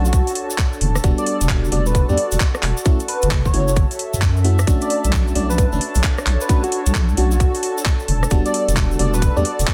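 Soulful and late-night, this short excerpt of two-step UK garage in B minor moves at 132 BPM with a swung sixteenth-note feel, cycling through Bm9, Em9 and F#m7 chords. A deep, wobbling, saturated bass anchors the groove, joined from 0.1 seconds by a tight, up-front electronic kick, a garage kit of handclaps, metallic hats and rim clicks with softly clipped snare, and a grainy, bright tube shaker. Above them, an airy, dreamy lead carries the melody with vibrato and dub echo, while glassy, bell-like FM electric piano stabs with a cassette-tape tint sit over a smooth analog pad and a nostalgic, warbling lo-fi pad, both pumping with sidechain in the background of a dense, heavily limited mix.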